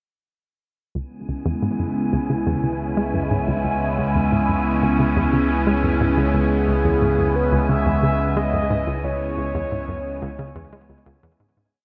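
A swirling analog pad, washed in phaser and chorus, holds a C#m7 chord up front in this mysterious, hypnotic ambient space music at 89 BPM in C# minor; beneath it sit a deep, round bass on C#2 and a hollow, bouncy square-wave pluck repeating a 16-step sequence through chorus and tape echo under a filter sweep, while an airy, wind-like tuned noise holds a dark high G#5 and a mellow, horn-like lead with vibrato enters at 6.3 seconds to sing a free, warbling melody, the whole piece bathed in a huge, lingering reverb and fading out from 8.1 seconds.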